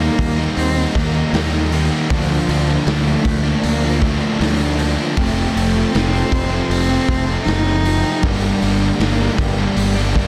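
Cathartic and dark, this passage from a longer quiet-loud alternative rock piece moves in a straight 4/4 over chords of Eb, Bbadd9/D, F and Gm. A rich, bowed cello carries the melody up close, its vibrato smooth and even, with an analog delay coloring the line. Beneath it, an overdriven semi-hollow guitar and a raw garage guitar play picked riffs from the background, while a growly fuzz bass sits up front and anchors the low end. The garage drum kit enters at 0.2 s with hi-hat, a punchy kick and a medium-tuned snare, sounding gritty and saturated in a bright stone room with a rolled-off top. A piping tonewheel organ holds very quiet sustained chords through a fast rotary speaker, and the mix is dense and heavily limited with light reverb.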